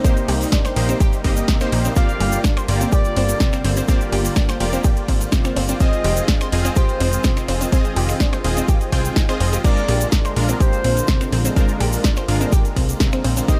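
A punchy, up-front electronic kick drives this bittersweet progressive house excerpt, joined by an overdriven deep house kit with metallic hats, a funky sawtooth bass with tube saturation, tape-echoed supersaw stabs and round analog pluck arpeggios, a lush nasal pad and a grainy egg shaker in the background, and a smooth, vibrato-laden synth lead that enters at 2.0 seconds, while the whole excerpt moves through Cm7, Gm7, Fm7 and Bb7 chords, with sidechain pumping on the pad, pluck, stabs, bass and lead in a dry mix.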